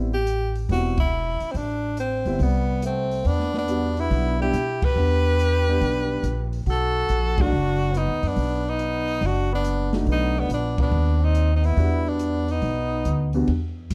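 Small-group swing and bop jazz in E minor at 141 BPM, this cool, smoky passage cut from a longer piece swings its eighths as a vibrato-laced tenor saxophone carries the melody up front with a soft attack and plate reverb, while a distant, punchy trombone enters at 2.4 seconds with a forceful second line. A warm grand piano comps underneath, a woody, thumpy upright bass plucked on gut strings sits up front, and an open acoustic drum kit with dark cymbals, a medium-tuned snare and a boomy kick keeps time in a small room. The band hits accents at 0.9, 4.7, 7.3 and 10.7 seconds over chords moving from Am9 to Em9 to B7#9, all under light reverb.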